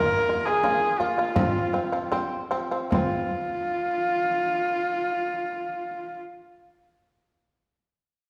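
Mongolian traditional folk in F yu mode at a solemn, vast 72-88 BPM, this short excerpt cut from a longer piece sets a clear, husky horsehead fiddle melody with light vibrato and portamento up front over buzzing, plectrum-plucked shamisen arpeggios, while a frame drum struck with hard hands sounds from 0.3 to 3.3 seconds, the tempo slows through the opening 2.9 seconds before a second section begins, and the whole sits in a wet recital hall reverb.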